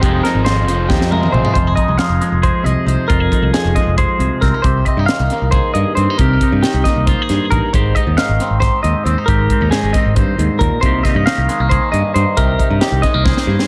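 Driving 7/8 at 272 eighth-note beats per minute gives this restless, intricate math rock and midwest emo cut its lurching pulse, moving in F minor from Fm9 into a cycle of Fm7, Cm7 and Abmaj7. Up front, a fingered, twangy electric guitar carries the accompaniment through phaser and tape echo, while a bright, compressed clean electric guitar picks high arpeggios and a crunchy, double-tracked overdriven guitar riffs in the background only until 1.6 s. A growly, direct picked electric bass anchors the low end, and a crisp fusion drum kit with a high-tuned snare, punchy kick, toms and tape echo sits up front, adding fills at 0.9 s and 13.2 s in an echo-heavy small-room mix.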